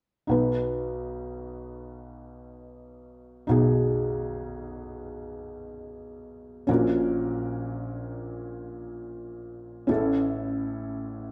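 A soft, mellow, vintage felt-muted upright piano sits up front in this tender, emotional pop excerpt in free time and B major, playing an intimate accompaniment from A1 to B4 that moves from B to F#/A# at 6.7 seconds and on to A at 9.9 seconds, all heard in a live take within a stone room whose reverb lends a wet glow.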